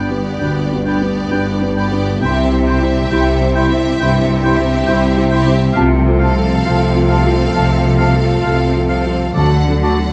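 Uplifting and hopeful, this short cinematic passage unfolds at an unhurried, rubato pace in 4/4, cut from a longer piece. A lush violin section carries the melody with focused vibrato, while a second, softer violin line, a clear solo oboe, a distant, very quiet clarinet and an airy, hollow small flute group add supporting second lines. Underneath, a felt-muted upright piano adds an intimate, thick-felted accompaniment alongside a very quiet viola section, mellow French horns hold tight sustained chords, and a ringing, thumb-plucked concert harp spins arpeggios. The low end rests on a distant, clear cello section and a dark double bass section placed up front. The harmony moves from G to C and F/C before landing on D at 9.4 seconds, where close, dry timpani with calf heads enter for the final moment. A moderate scoring-stage reverb gives the ensemble a spacious, cohesive glow.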